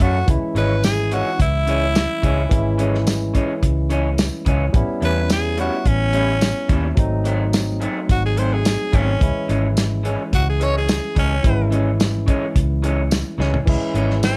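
Straight-eighth soul blues in C# minor at 108 BPM, this brooding, smoky passage is cut from a longer piece. A growling tenor saxophone carries the melody up front with a raspy, gritty jazz tone. A barky tine electric piano adds clean, direct accompaniment, while an electric guitar through a small old amp plays twangy, slightly broken-up stabs with slapback echo until 14.1 seconds. Underneath, a vintage muted fingered electric bass gives round, punchy, foam-muted low end, and a soul drum kit with dark cymbals, a tight kick, tambourine and toms sits forward in a small room. The chords move from C#m through A7 and G#7b9 back to C#m, with a drum fill at 13.4 seconds, all framed by light reverb.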